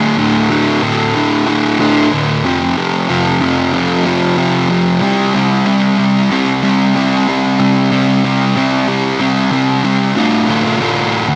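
Straight 4/4 at 93 BPM, this dark, cathartic rock fragment in D minor, tuned to A4 = 445 Hz, is carried by a lone picked, double-tracked fuzz guitar, distorted, compressed and placed up front, moving through D5, F5 and C5 chords before shifting to D minor at 10.2 seconds, set in a lush hall reverb that lends a big arena sound.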